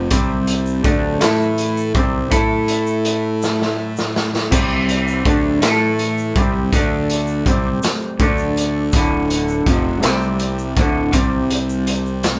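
A dark, slightly broken-up electric guitar riff opens this trippy, kaleidoscopic psychedelic rock excerpt in a slow, swaying 6/8, sitting up front with a throbbing harmonic tremolo over chords that move between C5, A5 and D5. A fuzzed, overdriven fingered bass plays beneath it, bright and punchy. Almost at once a raw garage drum kit joins with a saturated, gritty sound, pumping small-room ambience, dark cymbals and a punchy kick, and it rolls through a fill from 3.4 to 4.5 seconds. Very quietly, a fat, clean tonewheel organ holds sustained chords with third-harmonic percussion, chorus vibrato and a slow rotary speaker, while a grainy tube shaker adds texture in the background. The whole band sounds as if it is playing live in one room with light reverb, giving the cut a raw immediacy.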